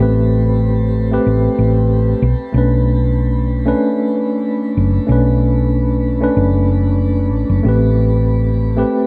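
Smooth and relaxed, this sunset chillout excerpt moves at an unhurried 94 BPM in a straight 4/4. A tine electric piano carries the accompaniment, clean and up front through its built-in speakers, with tape echo and a shimmer reverb adding a glowing tail to its chords. Underneath, a hollow-body short-scale electric bass played with the fingers sits low and up front, its amped tone dark and round, stopping at 8.8 seconds while the piano rings on to 9.1 seconds. The harmony drifts from Am9 to Bm9 at 2.2 seconds and returns to Am9 at 7.7 seconds. Light reverb and a digital ambience frame a warm, dusky production, and the clip is cut from a longer piece.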